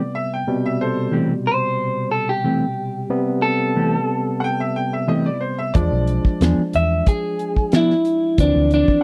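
This smoky, brooding soul blues excerpt in A minor opens on an Am7 chord at a steady 91 BPM with a straight-eighth feel. An electric guitar through a small old amp carries the melody, its picked tone slightly broken-up and lo-fi. A brilliant, woody upright piano traces a second line higher up and sits further back. A barky tine electric piano supplies clean, direct accompaniment beneath both. From 1.1 seconds a mellow, fingered electric guitar adds dark, clean stabs. At 5.7 seconds the harmony moves to E7b9, and a damped 70s drum kit with a fat snare, tight kick and hi-hat arrives with a round, foam-muted fingered bass, before the chords turn to Dm7 in a dry, close 1970s-style studio sound.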